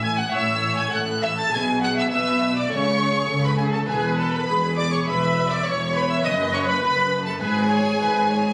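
A phone recording made in the room catches a lively, spirited string orchestra under a club-like reverb and compression, the players set on a scoring stage with moderate reverb, in this brief cut from a quick classical-period movement in A major at 102 BPM in 4/4, played with rubato. Two lush, up-front violin sections carry the melody and a second line with smooth vibrato, while a focused viola section enters at 0.3 s with bowed accompaniment. Beneath them a rich cello section and a close, expressive double bass section hold the bass as the harmony moves from A through E7/B and A/C# to E, B5/F# and a closing G#madd11.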